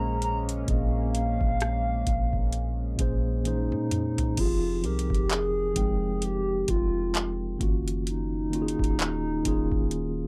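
A dry, close-sounding recording with very little reverb opens on this short cut from a longer contemporary R&B piece, slow at 65 BPM in 4/4 with a swung sixteenth feel, in F minor, and its mood is longing and sensual. A hollow, woody synth lead with a clarinet-like tone carries the melody, its soft attack, vibrato and chorus giving it a mellow glow. Beneath it, an up-front, mellow tine electric piano supplies the accompaniment, and a round, dark 808-style bass with a fast attack and decaying tail anchors the low end. A shimmering, retro pulse-width pad holds sustained chords with subtle chorus and sidechain pumping before falling away at 4.3 seconds. The booming analog drum machine sits forward with a deep kick, metallic hats, handclaps, rim clicks, crash and toms, rolling through a drum fill from 3.5 seconds as the harmony shifts from Bbm7 to Fm9 and then to Ebm9 at 7.6 seconds.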